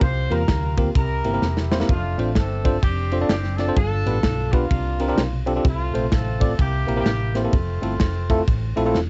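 Jubilant and uplifting, this short cut from a longer piece is uptempo gospel in F major at 128 BPM, moving in 4/4 with a swung eighth-note feel. A modern studio drum kit sits up front with bright cymbals, a tight kick and a medium-tuned snare, with ride cymbal in the mix, a fill at 1.4 seconds, and a cassette-tape colour to its polished, airy sound. A bell-like tine electric piano carries the accompaniment, clean and direct, spanning G2 to D5. Beneath it, a hollow-body short-scale electric bass played with the fingers gives round, punchy, dark low notes between E1 and E2. The horn section takes the melody from a distance, a roomy jazz-style ensemble heard through cassette tape and sitting lowest in the balance. The chords move from C7sus4 and C7 through F6, G7 and C9sus4 before settling on Fmaj7, all under light reverb with the muffled top end of a home cassette recording.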